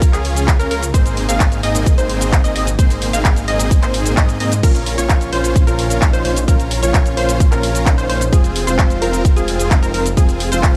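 A punchy electronic kick sits up front from the start, joined by a house kit of bright hats, cabasa, crash cymbal and handclaps, a huge, thick supersaw riff, a lush, wave-folded unison pluck playing arpeggios, and a saturated detuned saw bass with chorus. The synth parts pump with the sidechain, and the riff and pluck carry tape echo. At 4.6 s a dark, mellow baby grand piano enters in the background, adding to the emotional, powerful drive of this festival progressive house cut under light reverb and lossy compression artefacts.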